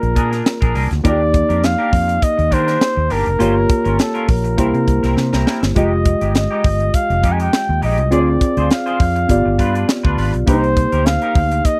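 A dry, close studio sound frames this bittersweet, urban excerpt of polished 1980s jazz-funk pop in C minor at 102 BPM with a light 16th-note swing, where a mellow flugelhorn with light vibrato carries the melody up front over a worn, slightly out-of-tune tine electric piano with analog chorus, a twangy picked guitar riff with lush chorus sitting lower in the mix, a dark, round fretless bass, and a crisp fusion kit with a high-tuned snare and punchy kick that plays a fill at 5.2 seconds, moving through chords like Ebmaj7, Fm9 and Dm7b5 before settling on Cm7.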